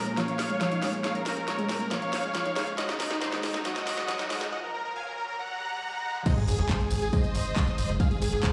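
Soaring, uplifting trance cut from a longer piece, where a huge, thick supersaw melody and a warbling, vintage pad ride over a filter-swept pluck arpeggio and a house kit with cracking snare and bright hats, joined from 2.3 s by a background riser and sub drop through the build-up and short break, until the drop at 6.3 s brings a punchy overdriven kick, a second full-bodied pluck line, a jingly tambourine and, just after, a tight, driving sequencer bass, all set in a wet digital room reverb.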